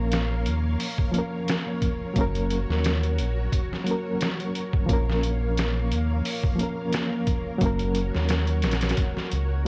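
A hypnotic, cinematic trip hop excerpt in Bb minor at 88 BPM opens with a reedy, slightly out-of-tune electric piano carrying fast tremolo, tape echo and sampler grit, over mellow, full-bodied string-machine cellos with ensemble chorus and a deep, round analog bass with tube saturation. A gritty, pitched-down sampler drum kit with a thumpy kick and medium-tuned snare comes in at 0.1 seconds, swinging lightly on the 16ths as the chords move between Bbm and Gb. The dry mix sits under a haze of worn, warbling cassette tape, vinyl crackle and drifting pitch.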